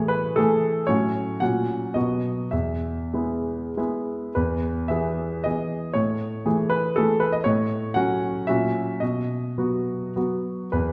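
A wet recital hall reverb surrounds this short excerpt, with the listener placed further back in the room. The solo concert grand piano still sits up front, its tone clear and natural, with a deep bass and a short sustain, spanning E2 to F#5. It's a romantic classical dance in triple time, graceful and proud, shaped with dotted rhythms and a flexible rubato pulse. The opening phrase moves from Amaj7 through F#m/A and F#/A# to B before settling on E at 2.5 seconds. From 4.4 seconds the phrase returns, revisiting the same harmonic path with F#7/A# and arriving on B at 9.0 seconds before the fragment breaks off, cut from a longer piece.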